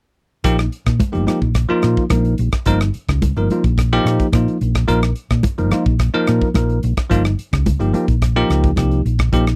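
Electric jazz fusion in Bb dorian at 108 BPM, this intense, slick excerpt rides a straight 4/4 groove built on a single Bb chord, cut from a longer piece. A bright, bell-like tine electric piano with subtle chorus carries the accompaniment up front beside a dark, round hollow-body short-scale bass, while a polished studio drum kit with tight kick, hi-hat and rim click sits airy and up front and high-tuned, thick-skinned congas sit damped in the background. The sound is a dry, close 1970s-style studio recording with little reverb.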